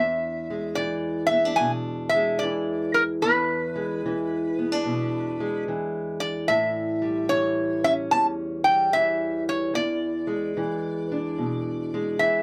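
A loping swung pulse at 74 BPM in 4/4 carries this gritty, laid-back acoustic country blues in E mixolydian, cut from a longer piece and moving from E7 to A7 at 6.5 seconds and back to E7 at 9.7 seconds. Up front, a metal-body resonator slide guitar played with fingerpicks sings the melody with a metallic, nasal bite. Beside it, a fingerpicked parlour steel-string acoustic guitar with old strings supplies a dark, woody, boxy accompaniment, all heard in a moderate booth ambience.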